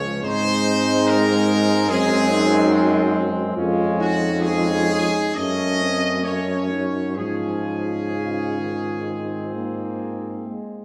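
Serene and tender, this hymn-like classical piece for brass band moves at a slow, rubato pace between 62 and 76 BPM in 4/4, centered in D-flat major, and is cut from a longer work. A warm trumpet section carries the melody up front, its tone distant and roomy, while a clear flugelhorn traces a second line lower in the background. A present, clear trombone and a mellow euphonium with light vibrato supply the accompaniment behind them, and a tuba with vibrato anchors the bass up front. The harmony drifts from Ab through Ab7/Gb, Db/F and a shaded Gbm before settling via Db/Ab back onto Ab. All five parts sound together from the start, fading out between about 10.5 and 10.8 seconds, bathed in the lush reverb of a recital hall or church, giving the ensemble a glowing, devotional spaciousness.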